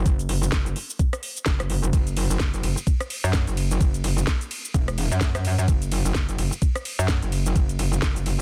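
A dense, heavily limited modern master set in digital ambience gives this short bass house excerpt a gritty, bouncy punch from its opening moment. At 128 BPM in 4/4, with a 58% swing on the sixteenths and tuning at A4 = 441 Hz, the groove has a loose, shuffling lean. The metallic wobble bass sits up front from 0.0 seconds, an aggressive FM and sine tone with a fast attack, sustained and saturated, moving between E1 and F#2 through chorus and sidechain pumping. A knocking electronic kick drum, layered and tape-tinged, sits forward from 0.1 seconds. Beneath it, a produced garage drum kit fills in with a cracking snare, metallic hats, ride cymbal, rim click and shaker, sitting lower in the mix.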